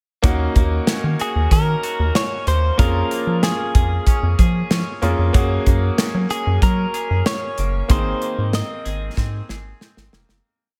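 A straight 4/4 groove at 94 BPM drives this short, moody 1980s-style pop piece in Eb dorian, with a modern studio drum kit up front, its punchy kick, medium-tuned snare and hi-hat delivering a big backbeat drenched in gated reverb. Beneath it, a rubbery square-wave bass with a hollow, resonant filter pluck bounces through a syncopated pop-funk line dotted with muted ghost notes. A brilliant grand piano holds close-voiced chords while a twangy, scooped electric guitar plays a fingerpicked roll pattern through lush chorus and tape echo, sitting low in the mix. From 1.2 s a compressed, direct-recorded clean guitar carries a nostalgic melody built from hook phrases, moving over Ebm7, Bbm7/F, Gbadd9 and Abadd9 in a small room. The piece begins to fade at 7.9 s, with a drum fill from 9.2 s closing it out at 10.4 s.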